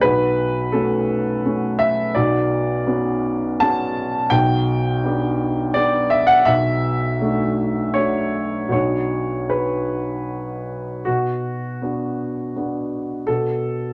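Neoclassical minimalist piano in B minor, wistful and intimate, drifting in rubato 3/4 at around 76-85 BPM, where a dark, mellow baby grand plays alone up front with long sustain in a wet small-room reverb, moving through chords over B before shifting into a new section at 11.1 seconds and closing on an unaccompanied moment as this brief excerpt of a longer piece ends.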